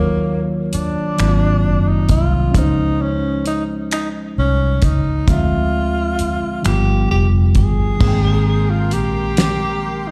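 A breathy, subtone tenor saxophone carries the solo melody with vibrato and a touch of tape echo in this yearning, late-night slow R&B in six-eight, cut from a longer piece. Reedy electric piano chords and a dark, foam-muted fingered bass sit beneath it, with a damped 70s drum kit entering at 0.7 seconds: fat snare, tight kick, dark cymbals, hi-hat and finger snaps, all kept dry and up front. At 8.0 seconds a lush, detuned unison pad with chorus enters over the move to Abmaj9, and the whole mix carries a large studio reverb, as if played on a big sound system in a bare room.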